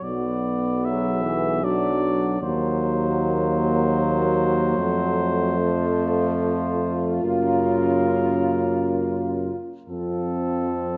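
A moderate scoring-stage reverb surrounds this elegiac, melancholic excerpt of hymn-like classical brass band music in 3/4, moving with rubato at 61-78 BPM through chords from Bm to Gbmaj7 and back to F, as a mellow, smooth-topped cornet carries the melody over a dark, distant French horn section playing the second line, a clear euphonium with light vibrato and a soft attack, and a roomy trombone in the background, with a warm tuba bass up front.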